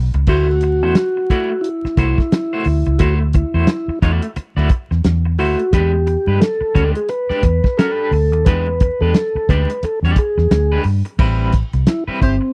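A mellow, flute-like tonewheel organ with soft key click and a slow rotary speaker carries the melody up front in this cool, funky 88 BPM excerpt, cut from a longer piece, with a swung sixteenth-note feel, moving from D9 to E7#9 and taking a solo from 11.2 s. Underneath, a foam-muted, round and punchy fingered electric bass and a dry soul drum kit with a fat snare, tight kick and rolled-off top drive the groove, while a twangy, slightly broken-up electric guitar adds tremolo-laced accompaniment. A punchy horn section with light vibrato appears briefly at 12.2 s, all captured in a close, dry 1970s-style small-room recording dusted with vinyl crackle.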